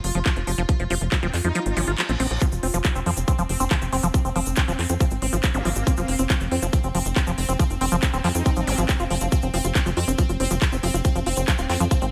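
A driving 139 BPM psychedelic trance groove in F minor rolls on a tight, up-front electronic kick and a tight, punchy sawtooth sequencer bass, with crisp hats and handclaps from a tape-warm drum kit, a grainy tube shaker arriving at 2.4 seconds, and the kick dropping out from 1.6 to 2.4 seconds under a reverse cymbal. Above them, a squelchy, resonant acid bass riff runs through a continuous filter sweep with phaser, delay and sidechain pumping, while a detuned, pulsing gated texture holds sustained chords with chorus and reverb. A very quiet, metallic FM wobble bass adds a second line in intermittent passages, and electronic zaps sit in the background of this alien-sounding excerpt from a longer piece.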